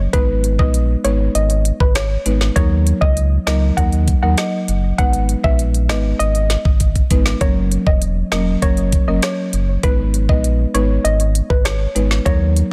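Bouncy and tough, this short dancehall excerpt rides a straight 4/4 groove from start to finish. An electronic island pop drum kit sits up front, with a knocking kick, a woody snare given soft clipping, smooth hi-hats and rim clicks, and a drum fill arrives at 6.8 seconds. A deep, full sub bass with an added octave holds the low end, its fast attack giving way to a sustained tone that is also placed up front. Underneath the tune, a buzzing marimba played with medium mallets on hardwood bars supplies dry accompaniment that pumps against the sidechain. On top, a soft, round pluck with a dark, wave-folded edge carries the melody, colored by chorus and delay. The dense, heavily limited modern master keeps reverb to a minimum, so the whole groove feels close and punchy.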